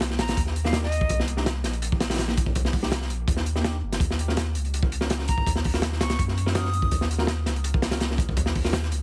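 A heavily compressed, radio-like sound in a small room frames this dark, atmospheric drum and bass excerpt at 165 BPM, where a crunchy, gritty breakbeat kit with punchy kick and hi-hat sits up front over a round, deep dub sub bass while a breathy jazz flute with vibrato and dub echo drifts in briefly at 0.2 and again at 5.3 seconds, and a bell-like tine electric piano stabs quietly in the background through chorus and echo as the chords move from Cm7 to Ebm7.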